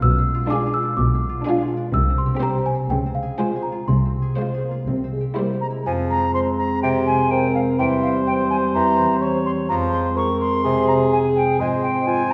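A bell-like, close-miked celesta carries the melody of this playful, whimsical F minor film cue at 125 BPM, over ringing harp arpeggios, veiled muted violins and violas, muted cellos and double basses, and distant French horn chords; as the celesta and strings drop out, a crisp silver flute enters at 5.6 s, joined by a clear bassoon, a roomy clarinet and a smooth cor anglais, all set in a wet recital hall and giving this passage, cut from a longer piece, a magical, quirky air.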